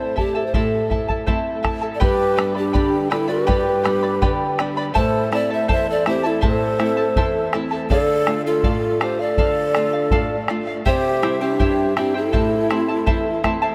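Soaked in a huge, dreamy reverb, this excerpt of earthy, festive Andean folk sets a polished, hollow pan flute melody with diffuse delay over shimmering fingerpicked charango, a small, woody nylon-string guitar and a deep, dry bombo, while a breathy large quena joins with a second line at 1.9 s.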